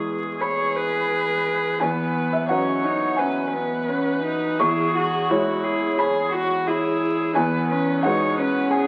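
Heard through the crackle of a very old 78 rpm record and a wet studio reverb, this short, hopeful and tender neoclassical fragment in E major drifts at a rubato 87 BPM, as a felt-muted upright piano lays down mellow, intimate accompaniment beside a softly bowed sul tasto viola with light vibrato and an airy bow, while a pure, floating cello joins at 0.4 s with a gentle second line, over chords moving from E6 to B6/E and then C#m/E.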